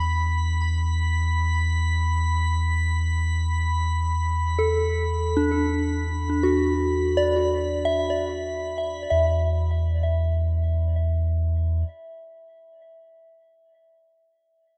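In free time, this ambient fragment from a longer piece drifts serene and melancholic, tuned to A4 = 439 Hz and resting on a Bm/E chord before the harmony falls away at 9.1 seconds. A soft, pure FM synth bell plays arpeggios up front between D4 and B5, its gentle, decaying tones colored by chorus, phaser and delay and lingering on a long release until 14.8 seconds. Beneath it, a round sine sub bass holds a deep, sustained E2 until 11.8 seconds. A drifting glass-harmonics texture rests on B5, its glassy, bright overtones slowly fading in with chorus and its own reverb before it stops at 9.1 seconds. A lush hall reverb with an RT60 of 2.7 seconds soaks the whole dreamy mix.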